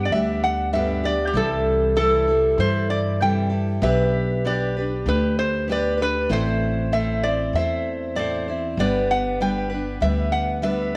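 A straight 4/4 pulse at 97 BPM carries this gentle, pastoral acoustic folk piece in G major, moving from G through C6, G/B and Am before returning to G. Up front, a metal-body resonator guitar carries the melody with slide and fingerpicks in a metallic, nasal voice, while a bright picked steel-string acoustic guitar provides accompaniment and a woody pizzicato upright bass holds the low end. A moderate echo-chamber studio reverb gives the small band a roomy glow.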